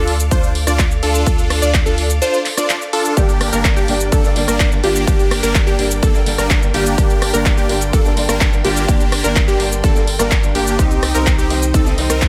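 A layered big-room kit of handclaps, hi-hat, rim click and shaker opens this powerful, anthemic festival progressive house excerpt at 126 BPM in G minor, soon joined by a punchy, overdriven electronic kick that sits up front, while huge detuned supersaw chords with a moving notch play a riff over a deep, thick sub bass, all breathing with sidechain pumping. A lush, wave-folded unison pluck spins arpeggios through tape echo in the background, a clear bowed string section holds sustained chords with vintage 12-bit sampler grit, and from 3.2 seconds a dark, boxy fingerpicked parlour acoustic guitar adds accompaniment. The chords move from Dm to Gm to Cm under light reverb.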